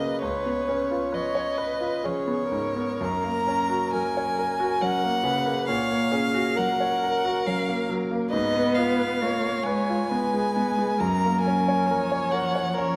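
This is a slow romantic classical movement for piano quartet in F# major, lyrical and tender, moving at 67 BPM in 3/4 with a freely breathing rubato, and it is a fragment cut from a longer piece. A rich, smooth violin carries the melody up front, its even, vibrato-laden bowing sitting close. A bright grand piano shares the foreground with a brilliant, open accompaniment of short sustain, while a warm viola adds expressive accompaniment with vibrato and gliding portamento. From 1.1 s a warm cello joins as a second line, its soft-attacked, expressive bowing also colored by vibrato and portamento. The harmony passes from C#7 to F#, then through F#/A# and Fdim/Ab before settling back on F#, all within a wet scoring-stage reverb of 2.0 s that gives the quartet a spacious glow.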